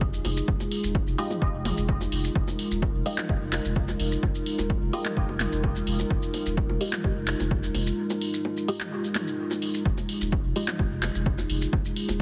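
A straight 4/4 pulse at 128 BPM drives this nocturnal, deep dub techno excerpt in F minor, built on a punchy electronic kick drum placed up front from the very start. A punchy analog drum machine joins at 0.1 seconds with handclaps, hi-hat and shaker, and both it and the kick carry the ambience of a large room. Electronic bongos and toms, layered and overdriven, sit in the background with dub echo and sidechain pumping. Underneath, a round sine sub bass holds the low end, while a dark analog pad sustains moody, detuned chords on a lingering Fm7, thickened by chorus and ring modulation and pumping against the kick. A muted, filtered dub chord stab of sawtooth and square waves appears at 1.2 seconds and drops out at 10.7 seconds, its short, evolving hits colored by phaser and dub echo. The whole mix sits inside a heavily compressed, radio-like digital ambience.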